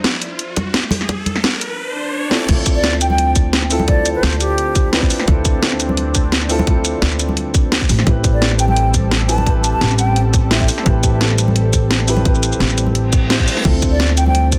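A dense, heavily limited modern master carries this melancholic, soulful liquid drum and bass excerpt at 172 BPM in D dorian, where a dark, boxy grand piano, a lush, detuned unison pad with chorus, phaser and 12-bit grit, and a garage drum kit with cracking snare and bright hats open beneath an electronic riser and swell as the piano and pad are filter-swept. A tight electronic kick and soft-handed congas join early, before the drop at 2.5 seconds brings in a woody pizzicato upright bass, followed shortly by an airy, hollow concert flute with vibrato and dub echo that drifts in and out over Dm9 and Am9 chords, with a reverse cymbal at 13.1 seconds.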